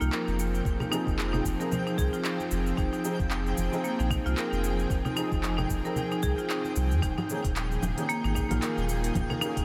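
A dreamy mix soaked in huge ambient reverb carries this earthy, peaceful stretch of organic downtempo, swung on the sixteenths and moving from Fm7 to Eb7sus4. A tense, string-like bowed drone and a deep, round sub bass both pump with the sidechain, while a woody marimba struck with hard mallets runs bright arpeggios through delay and a twinkling granular shimmer sits in the background. Crisp hats, cabasa, congas and handclaps from an electronic kit blend with close acoustic bongos and congas; a soft electronic kick arrives at 0.7 s, and a muted, intimate felt upright piano adds very quiet accompaniment from 0.9 s.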